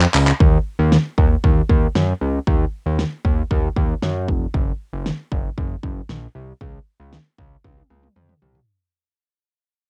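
A drum fill opens this driving, nocturnal synth-pop excerpt at 116 BPM in a straight 4/4. The layered electronic pop kit sits up front with a punchy kick, fat snare, metallic hi-hat, handclaps and toms, its sound colored by cassette tape. Alongside it from the start, a thick, saturated analog bass built from sawtooth and square waves, with ring modulation and a filter sweep, holds sustained low notes between F1 and Gb2. The music fades out from 0.4 seconds, and another drum fill arrives at 7.6 seconds, all in light reverb with the feel of a home cassette recording.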